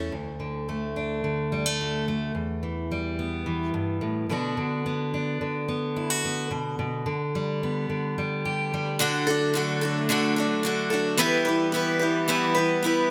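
A fingerpicked jumbo steel-string acoustic guitar, full-bodied and bright with fresh strings, carries this anthemic, nostalgic folk excerpt in D major at 108 BPM, moving through D, Em, Bm and G/B before stopping at 11.2 seconds. A bright, picked concert acoustic guitar sounds briefly at the very start, then returns at 9.0 seconds to sit up front alongside a warm chamber string section bowing soft-attack, sul tasto sustained chords that sound pure and floating. A moderate plate reverb and bright 1980s-style digital production give the whole a polished sheen.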